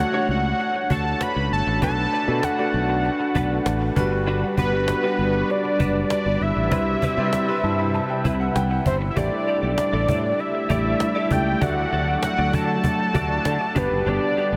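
A straight 4/4 pulse at 98 BPM from a snappy, close cajon with snares drives this glossy, nostalgic 1980s-style pop passage in D major, where a fat, nasal, detuned sawtooth lead with chorus, vibrato and diffuse delay carries the melody up front over a growly, bright fretless bass, while a brassy pad with tremolo and soft attack sustains chords in the background, a clear, polished grand piano with lush chorus adds a fill from 7.3 to 9.2 seconds, and a very quiet, clean picked electric guitar plays a riff, the mix soaked in huge, dreamy reverb as the harmony moves from Dmaj7 to A7sus4 at 9.2 seconds.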